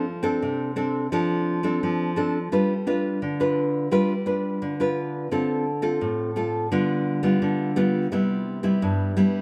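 The recording has a dark, warm production, with a moderate plate reverb and its long tail of about 3.5 seconds lending the sound a soft glow. Within it sits a single nylon-string guitar, acoustic and bright, fingerpicked in a classical manner and placed up front. This is a short samba in 4/4 with a straight feel, and its mood is playful and lively. The guitar plays solo throughout the 9.4 seconds, ranging from G2 to B4 as it moves through F6, Dm7/F and G7 before settling through Dm7 and G7/D onto Cmaj7 at 8.1 seconds. The passage is cut from a longer piece.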